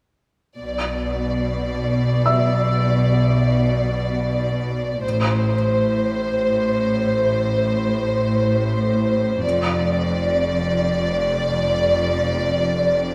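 Uneasy and mysterious, this cinematic fragment drifts in free time, with its strings sustaining through the whole passage. A lush violin section carries the melody up front, bowed with vibrato in a narrow high register. Beneath it, a clear cello section and an intense double bass section hold the bass line together, the cellos smooth and even, the basses bowed with light vibrato. From 2.3 s to 9.5 s a felt-muted upright piano adds a soft, mellow texture high above, close and intimate, with its action noise audible. The harmony moves from Bmadd11 to Am and settles on Dm/F, all bathed in a wet concert hall reverb.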